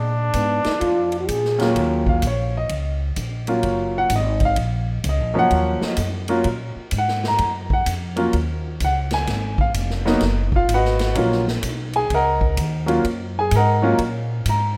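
A rough home-demo mix in a lush hall reverb frames this smoky, late-night small-group swing and bop excerpt in Eb minor at 128 BPM, with swung eighths. A vintage trumpet with light vibrato and scooped notes and a dark, breathy trombone sound briefly over a woody pizzicato upright bass and a natural, big-room drum kit of hi-hat, punchy kick, ride and snare, and a clear, intimate baby grand piano with audible action noise enters at 1.6 seconds to carry the accompaniment. The harmony moves from Bb7 to Ebm7, shifting to Abm7 at 9.3 seconds and back to Ebm7 at 11.2 seconds.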